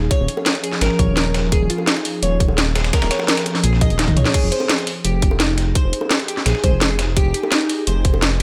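This cut from a longer liquid drum and bass track runs at 170 BPM in a straight 4/4, with a tight electronic kick and an up-front layered drum and bass kit driving it, the kit's cracking snare and metallic hats cutting through while a gritty, compressed sampler-style kit with a fat snare sits in the background. High-tuned acoustic bongos from 0.4 seconds add a distant, roomy layer, and a drum fill at 4.0 seconds leads into the change of chord. In F minor, the mood is lush and melancholic, moving from Eb9sus4 to Fm9 at 4.3 seconds. Underneath, a dark detuned saw bass rumbles with a beating, deep tone, while an ethereal, airy pad holds sustained chords in the background, coloured by ensemble chorus, built-in reverb, a phaser and sidechain pumping. Above it, a harp-like synth pluck rings out soft, mellow arpeggios with chorus and delay, and a light reverb gives the whole a gentle sense of space.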